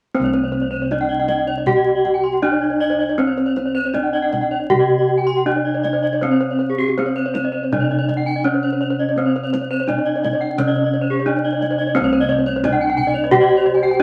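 This Balinese gamelan excerpt has a shimmering, brilliant mood and moves at a straight four-beat pulse. An up-front bronze metallophone carries the melody with a bright, horn-mallet ring. Two more metallophones weave arpeggios around it: one struck with a wooden mallet sounds close, dry and full, while the other, also horn-struck, sounds airy. Their paired tuning gives every bar a beating shimmer. Round, bossed gongs hold the bass beneath, and a tight kendang sits in the background. The music shifts into a new section at 12.0 seconds, and shortly after, at 13.2 seconds, a pure bamboo bansuri with vibrato enters distantly for a brief expressive second line. A moist studio reverb and a layer of vinyl crackle frame the sound, and the piece is cut off at 14.0 seconds.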